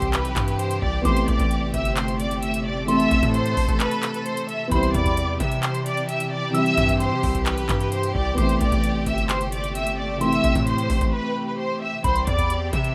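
A booming half-time trap beat from an analog drum machine, with deep kick, metallic hats and handclaps, drives this triumphant yet wistful hip hop excerpt: a lush symphonic violin section, softened by a low-pass filter, carries the melody over close, focused studio strings holding chords, a dark, mellow grand piano and a heavy, saturated 808-style bass, while a barely audible downlifter sounds in the opening second and a soft FM synth bell with chorus, phaser and tape echo enters at 1.1 s as a gentle second line in the background, the whole set in a dry, rough home-demo mix.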